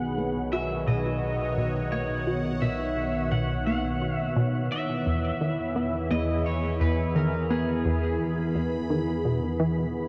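Ambient, sequencer-driven space music at 86 BPM in 4/4, mysterious and cosmic, where a twangy, slightly broken-up electric lead guitar with subtle chorus and delay carries the melody over a punchy, wave-folded analog bass riff under a filter sweep, a bright, ring-modulated pad sustaining chords from Badd9 to E at 4.7 seconds, and a dark, pulse-width-modulated drone, all bathed in a dreamy cathedral reverb in this ten-second cut from a longer piece.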